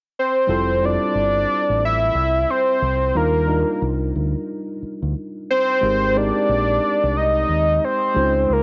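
A relaxed 4/4 groove with sixteenths swung at 63% sets a sensual, unhurried pulse in this short cut from a longer R&B and neo-soul piece. A fat analog lead carries the melody from 0.2 seconds, its detuned sawtooth and square tones reinforced by a sub octave and shaped with a fast attack, sustained notes, chorus and vibrato, sitting mellow and up front. At 0.5 seconds a worn tine electric piano joins with accompaniment. It is slightly out of tune and lightly overdriven, with a cassette tape coloring, as if heard through built-in speakers. The deep dub fingered electric bass enters at the same moment, dark, round and punchy, its direct, amped tone thickened by transformer saturation. The harmony moves through Fmaj9, Ebmaj9 and Abmaj9 under light reverb and digital ambience, giving the intimate character of a home recording on cassette.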